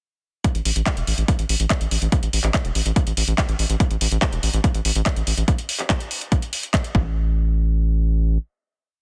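A four-on-the-floor electronic kick drives this short psychedelic trance piece at 143 BPM in straight 4/4, joined by a techno drum kit playing programmed closed and open hats and a handclap backbeat. The kick is punchy and layered, the hats metallic, and both sit up front with the character of a small room. A round analog bass rolls in sixteenth notes between E1 and A1, its deep, dark tone built from wave-folded square, sine, triangle and sawtooth shapes with a fast attack and sustained notes. The piece is one intense, alien drop starting at 0.4 seconds; the drums fall away just before a final hit at 7.2 seconds, and the bass holds on until 8.4 seconds. The dense, heavily limited master carries little reverb, keeping the kick, kit and bass close and up front.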